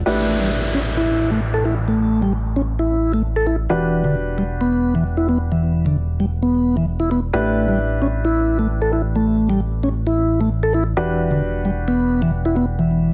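A heavily compressed, radio-style mix with a moderate studio reverb carries this swaggering, energetic breakbeat cut at 132 BPM in straight 4/4, moving between A9sus4 and Em9 chords. A fat, detuned sawtooth bass with a filter sweep sits up front in the low register, joined by a mellow, flute-like tonewheel organ riff through a slow rotary speaker, tube saturation, a low-pass filter and delay. Dark grand piano stabs with vintage 12-bit sampler grit and delay sit lower in the mix, while an electronic downlifter sounds from 0.1 to 3.7 seconds.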